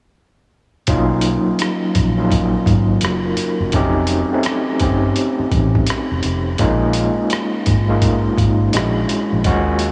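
Late-night and smooth, this R&B and neo-soul fragment moves at 84 BPM in 4/4 with a 62% swing on the sixteenths, as overdriven tine electric piano, vintage muted fingered electric bass and a boom bap sampler-style drum kit all enter together at 0.9 seconds. The barky electric piano sits up front through a combo amp with medium tremolo, the foam-muted bass is dark and round, and the pitched-down, compressed drums bring a thumpy kick, hi-hat and rim click with a gritty small-room character. A huge ambient reverb soaks the mix in a dreamy haze over chords moving from Bmaj9 through F7b13 and Bbm7 to Bb7alt.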